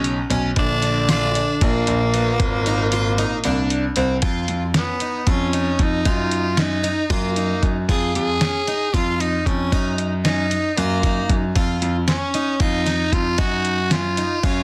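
Progressive instrumental band music in 7/8, this brooding, driving excerpt moves at 229 BPM in eighths with a straight feel in Eb minor. A growling, raspy tenor saxophone carries the melody up front with jazz-style vibrato, while a warm, close-miked trombone plays a second line in the background until 3.7 seconds. A picked, plugged-in twelve-string acoustic guitar spins shimmering, octave-doubled arpeggios with a boxy parlour tone and audible finger squeak. A brilliant grand piano takes the bass role up front, beside a lo-fi sampler-style drum kit that sounds pitched down and muffled, with a thumpy kick, medium-tuned snare and hi-hat. The kick and snare drop out from 2.7 to 4.2 seconds, when the harmony shifts from Csus2 to Db9/F and a new section begins, cycling through Ebm/Gb and Fm7 chords under light reverb, small room ambience and a dense, heavily limited modern master.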